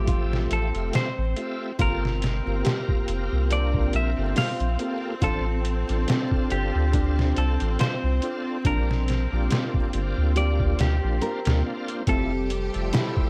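The gritty, pitched-down sampler-style drum kit drives this dark, cinematic trip hop excerpt, its thumpy kick, medium-tuned snare and hi-hat sitting up front at a slow 70 BPM in 4/4 with a light swing on the 16ths in D minor. Beneath it, a deep, round dub sub bass with a soft triangle-and-square character holds the low end from the start until 12.9 seconds. A clean, picked semi-hollow electric guitar carries the melody with a hollow-body tone and tape echo, while a bright, shouting tonewheel organ fills in accompaniment through chorus vibrato, a slow rotary speaker and harmonic tremolo. A lush symphonic string section sustains smooth bowed chords, and a woody nylon-string guitar with old strings fingerpicks arpeggios in the background, also touched by tape echo, over a progression moving from Fmaj9 through Gm9, Dm7 and Bb6 back to Fmaj9. Vinyl crackle runs throughout the fairly dry mix, and an airy, breathy wind-like texture on C5 appears very quietly at 12.6 seconds.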